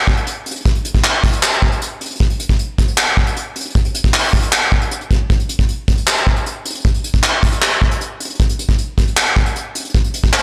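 A half-time hip hop groove in 4/4 at 155 BPM carries this eerie, melancholic fragment, cut from a longer piece. A soft acoustic brush drum kit plays up front from 0.1 s to the end at 10.4 s, with a punchy kick, hi-hat and handclaps in a small-room sound. The whole recording is blown-out and overdriven, touched with light reverb.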